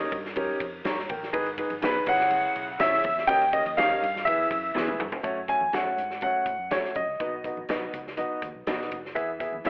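A straight, danceable 4/4 groove at 123 BPM drives this uptempo, uplifting 1960s-style soul excerpt: a punchy natural drum kit with a drum fill at 4.8 s, a dark, foam-muted electric bass sitting in the background, very quiet hard-handed congas, and a woody upright piano laying down the accompaniment. Slightly broken-up electric guitar stabs join under the mix, and from 1.8 s an intimate grand piano carries the melody up front, with audible action noise, while a distant, nasal erhu adds a bowed second line with portamento until 5.0 s. The whole track has a telephone-filtered sound with moderate echo chamber reverb and studio ambience, moving from G#m and C#m toward F#m and B in its second half.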